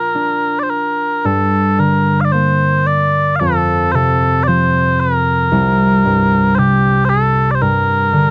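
Mellow small bagpipes and concert harp begin together in this haunting, longing Celtic slow air, a short rubato excerpt cut from a longer piece. The pipes carry the melody up front with a sweet, continuous tone and vibrato, while the thumb-plucked harp rings beneath in a low-to-middle register through chords moving from Bb and G minor to F and C. The sound is dry and close, like a 1970s studio recording, with both instruments placed near the listener.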